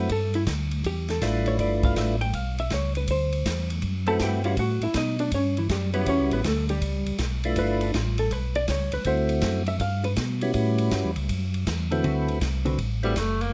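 A swinging 4/4 groove at 161 BPM drives this greasy soul jazz organ trio in D major, with a polished big-band drum kit of hi-hat, ride, punchy kick and medium-tuned snare sounding airy in a hall, while a dark, lightly overdriven organ bass with chorus vibrato and slow rotary sits up front. A clean, percussive tonewheel organ carries the melody through slow rotary speaker and plate reverb as a compressed, fingered hollow-body electric guitar solos over chords such as G13, D13 and A13. Near the end of this cut from a longer piece, a breathy, whispered tenor saxophone with scooped notes slips in at 13.0 seconds.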